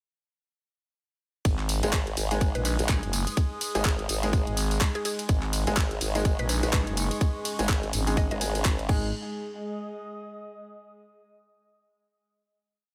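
Bass house at 125 BPM with a swung, gritty, swaggering feel: from 1.4 s a tight, overdriven four-on-the-floor kick and a programmed garage kit of claps, hats, tambourine, ride and crash drive a drop built on two up-front basses, a thick, growling FM bass with chopped phrases, joined at 1.8 s by a formant-swept wobble bass whose modulated phrases change wobble speed and answer it. Sparse, echoing stabs from an intimate grand piano with audible action noise move one chord shape in parallel, while a woody, round mallet-like pluck adds short answering phrases in the background. A moody analog pad with phaser arrives at 5.3 s, and a nostalgic, lo-fi tape-like pad with detuned, slowly shifting chords sustains after the drop ends at 9.1 s, all within a digital ambience.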